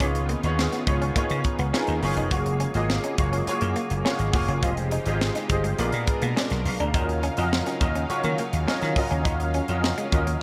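Nocturnal and urban, this polished 1980s jazz-funk pop excerpt moves at 104 BPM in Eb minor, with a tight funk drum kit's high-tuned snare and gated reverb sitting up front beside a punchy, amped slap bass. A clear baby grand piano carries the accompaniment through an ensemble chorus, slipping in a fill at 1.2 seconds, while a hollow-bodied, clean semi-hollow electric guitar riff with lush chorus stays in the background. A thick, nasal, detuned sawtooth pad holds sustained chords behind them through changes from Db9 and Gbmaj9 to Fm9, Bb7b9 and Ebm9, all in a small room ambience.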